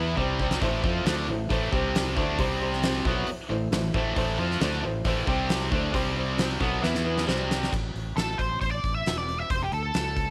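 Gritty and swaggering, this classic rock cut from a longer piece drives at 135 BPM in A minor, with two bright picked distorted guitars (one overdriven and up front, one tight in the background) grinding out a riff over a woody, mellow upright piano, a punchy fingered bass and a huge arena kit with a fat snare and punchy kick whose fills land at 0.2 and 6.8 seconds, before the guitars and piano stop at 7.7 seconds and a dark octave-fuzz lead guitar with wah takes the melody from 8.2 seconds under light studio reverb.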